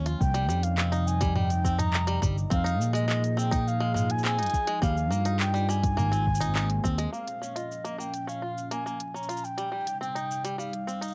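Delicate and autumnal, this folktronica piece, cut from a longer work, moves at 104 BPM in a straight 4/4 in Bb dorian, with a light reverb and a layer of vinyl crackle around it. A warbling, nostalgic pad of detuned sawtooth and triangle tones with a sub octave holds sustained chords throughout, its slow attack and long release softened by chorus, built-in reverb and a vintage 12-bit sampler grit. A twangy, fingerpicked bluegrass banjo plays percussive arpeggios through a low-pass filter, while a punchy, up-front fingered electric bass with tube saturation anchors the low end until 7.1 seconds. A soft electronic kick and an organic electronic kit of cabasa, handclaps, crisp hi-hat and toms carry the rhythm, and an airy, close-miked baroque flute sings a straight-toned, tongued, slightly unsteady melody high above, trailed by tape echo. The chords move from Cm through Fm7, Ebadd9 and Abadd9, the band hits an accent at 6.6 seconds, and the closing stretch turns to Bbm and back to Cm as a filter sweep passes over the pad.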